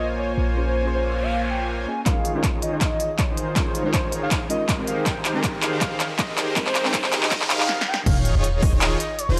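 A velvety, vibrato-tinged synth lead carries the melody through this lush, dreamy future bass excerpt at 160 BPM in a swung, half-time 4/4, its chorus and digital delay pumping under sidechain compression. Beneath it, a smooth, airy supersaw riff runs throughout under a low-pass filter that sweeps during the build-up, while a soft, round pluck sits dark in the background until 7.5 s. A deep, boomy 808-style bass with tube saturation opens the passage over Bbm9, drops out, then returns with the drop at 8.1 s, where a faint, dreamy arpeggiated lead with cassette tape coloring and tape echo also enters. From 2.1 s a punchy, overdriven big-room kit with crisp hats, handclaps, snare and crash, plus an up-front electronic kick, carries the build-up through drum fills and a brief break. A very quiet noise sweep, riser and sub drop mark the transitions, and light reverb with digital ambience frames the mix as the chords move from Bbm9 to Eb9sus4 and Abmaj9/Eb.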